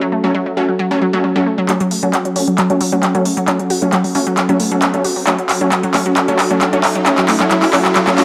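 A bright, detuned sawtooth pluck riff with delay opens this intense, industrial peak-time techno excerpt in F# minor at 134 BPM, over a dark, warbling lo-fi pad with chorus in the background, and thick, aggressive rave stabs with tape echo arrive at 0.2 seconds. At 1.7 seconds an overdriven, up-front electronic drum kit of handclaps and smooth hi-hats drops in with a fill, launching a build-up as filter sweeps run through the synths. A very quiet riser joins at 4.7 seconds, all within a moderate digital plate-reverb ambience.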